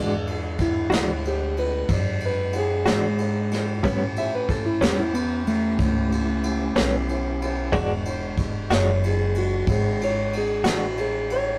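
A rough rehearsal-room recording with tube saturation and light reverb carries this gritty, rollicking slow blues in 12/8, where a dark, clean lap steel plays a slide solo over an up-front, compressed electric guitar with tremolo, a fat, lightly overdriven tonewheel organ with key click and slow rotary speaker in the background, a woody, growly pizzicato upright bass, and a brush drum kit with a punchy kick and a rolled-off top, all moving from E9 to A9 and back.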